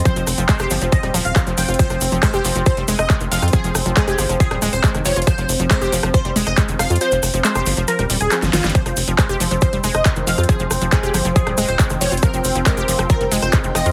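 A punchy, overdriven electronic kick drives a straight pulse in this hypnotic, psychedelic trance excerpt. It drops out from 7.0 to 8.8 seconds, with a drum fill bringing it back. A tight sequencer bass sits up front, sawtooth and square tones giving it a fast-attack, decaying pluck. Around them, the big-room dance kit adds a huge overdriven snare, handclaps, rim clicks and metallic hi-hats, with a grainy egg shaker in the background. A full-bodied supersaw stab carries the melody through phaser, tape echo and sidechain pumping. Beneath it, a lush, detuned unison pluck riff runs through delay. A dark, warbling wavetable pad holds sustained chords under phaser and reverb, and an ethereal, airy pad with ensemble chorus joins at 10.3 seconds, all set in a heavily compressed, radio-like mix with light reverb.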